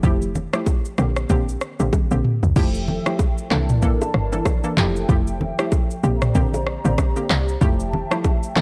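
Afrobeats at 95 BPM in F major with a joyful, sunny swing, where an up-front electronic drum kit with a deep kick, handclaps, rim clicks, shaker and toms sits alongside a punchy, woody log drum bass, a round, detuned analog pluck with chorus sparkles through Fmaj9, Bb69 and C13 chords, very quiet close congas and bongos add hard-handed accents, a drum fill at 1.9 s leads into a hollow, flute-like pad that enters at 2.6 s with ensemble chorus, and the whole piece carries a dry, gritty hardware sheen with transformer saturation.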